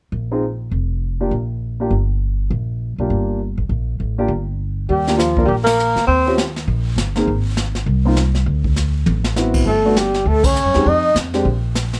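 A woody pizzicato upright bass opens this relaxed small-group swing and bop excerpt at 201 BPM in Eb major, joined almost at once by an up-front grand piano in accompaniment, before a brushed drum kit with dark cymbals and a boomy kick enters at 4.9 seconds alongside a mellow, vibrato-tinged flugelhorn melody and a breathy, subtoned tenor saxophone second line, both returning at 9.7 seconds after a drum fill at 8.8 seconds, with band accents and light reverb giving the group a warm, easy glow.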